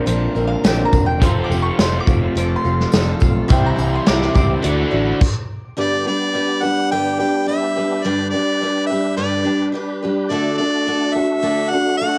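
Recorded at home on cassette with a light reverb, this short cut from a longer folk rock and heartland rock piece moves at 106 BPM in G major with an open-road, nostalgic mood. A woody, double-strung mandolin with tape echo takes a solo over bright picked acoustic guitar, a hushed concert grand piano with audible action noise, a phaser-tinged crunchy electric guitar riff, fingered electric bass, an up-front country drum kit with bright cymbals, a jingly tambourine and a background tonewheel organ turning through a slow rotary speaker, until a break at 5.2 seconds. At 5.8 seconds a clear, pop-style harmonica carries the melody over the acoustic guitar and organ, which continue to the end at 12.2 seconds.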